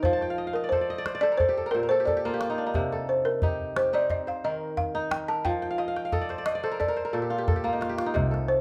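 West African traditional string and xylophone music at 89 BPM in a straight 4/4, with a flowing, hypnotic mood over chords moving through F, C minor and E-flat in this short clip from a longer piece. A woody, round balafon struck with soft rubber mallets carries the solo melody throughout, while an up-front, bright kora rings out fingerpicked arpeggios and fills, and a small, close, dry calabash keeps the percussion going with a drum fill near the end. At 8.1 s a veiled, bowed double bass played con sordino with light vibrato slips in for a boxy low note, all set in the moderate reverb of a large studio where the band plays live together.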